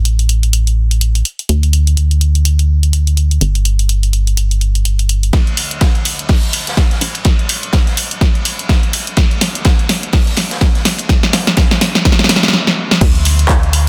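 A hollow, dark, organ-like FM bass with sidechain pumping anchors this joyful, feel-good piano house excerpt at 125 BPM with swung sixteenths, joined from the start by a punchy analog drum machine of crash, handclaps, hi-hat and soft-clipped snare. At 5.3 seconds an up-front electronic kick and a gritty, saturated garage kit with ride and a rolled-off top arrive alongside it to drive a build-up of drum fills that halts in a stop at 12.5 seconds, set in light small-room reverb inside a dense, heavily limited master.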